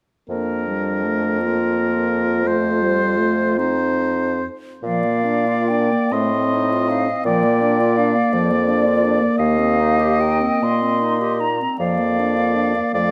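Classical wind quintet music in a slow, lyrical and serene romantic movement, in Bb major and a rubato 6/8 at roughly 44-58 BPM, heard in a recital hall with moderate reverberation. A clear, up-front oboe with light vibrato carries a second line over a close, clear clarinet set in the background, a dark French horn and a clear bassoon bass that also carries light vibrato. At 4.8 seconds an airy, hollow concert flute with vibrato and a crisp attack enters on the melody above them, as the harmony moves between Bb and F7 and touches Eb6 before settling on Bb/F.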